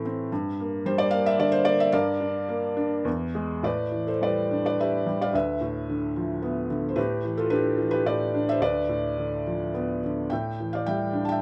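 A felt-muted upright piano opens this short fragment on its own, its hushed, thin-felt tone sitting close and intimate in a light reverb. The mood is bittersweet and brooding: a lyrical classical solo in G dorian, in 3/4 with a rubato feel, drifting between about 101 and 113 BPM. The piano spans D2 to A5, and its mellow, vintage character gives the lines a soft, smooth glow. After an opening passage on Gm and E, a new section arrives at 3.7 seconds, moving between suspended and sixth chords: A9sus4, Dm69, Dm6, and finally A7sus4 near 10.3 seconds. That last suspended chord sounds as the fragment ends at 11.4 seconds, a moment cut from a longer piece and tuned to A4 = 442 Hz.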